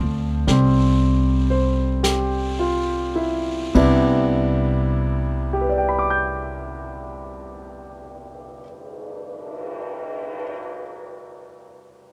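A slow jazz ballad in C major, swung at roughly 33-41 BPM in 4/4, this short passage cut from a longer piece carries a late-night, romantic mood. A clear concert grand piano sits up front with a deep bass register, providing the accompaniment from the opening through 12.1 seconds. Beneath it, a woody, growly pizzicato upright bass holds the low end until 8.6 seconds, while a vintage brush drum kit with dark cymbals, a punchy kick and a rolled-off top enters at 0.5 seconds, adding brushed snare, hi-hat, ride and a cymbal swell far back in the balance. The tempo slows down through the first 3.8 seconds over a G7sus4 before settling onto Cmaj7. Light reverb gives the acoustic instruments a natural glow.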